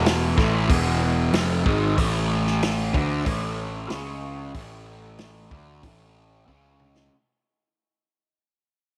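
Psychedelic rock with a trippy, dark mood, cut from a longer piece and fading out throughout, where an up-front, double-tracked raw garage guitar plays an overdriven riff with phaser over a fuzzy picked electric bass and a vintage acoustic drum kit with a punchy kick, a medium-tuned snare and a rolled-off top, all in light reverb and small room ambience, closing with a drum fill at 6.5 seconds.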